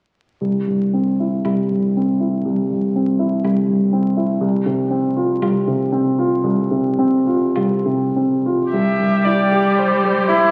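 Tender and warm, this brief cut from a longer slow romantic movement for piano quartet moves in a rubato 4/4 at roughly 49-62 BPM in C major, tuned to A4 = 442 Hz. A dark, mellow grand piano sits up front with a short sustain, laying down the accompaniment across a low-to-middle range over harmonies that move from C to F5/C. At 1.5 seconds a solo violin takes the melody, rich and expressive with vibrato and portamento, though it sounds somewhat distant. The harmony settles back on C as a smooth, even viola joins at 8.7 seconds, holding a single note with vibrato. Soon after, a cello adds an expressive second line with vibrato and sliding portamento. The whole is heard through a moderate scoring-stage reverb and the crackle of a very old 78 rpm record.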